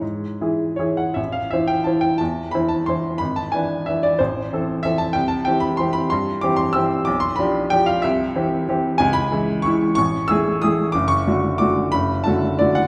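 A clear, woody upright piano plays alone in this bittersweet, elegant classical waltz in A minor, a rubato 3/4 moving between 151 and 197 BPM, its short-sustained notes ranging from F#1 to E6 through chords such as Am, E7/G#, C, G7/B and a closing Amaj7 to D/F#, set in a wet recital hall reverb and heard from further back in the room across this 12.9-second passage cut from a longer piece.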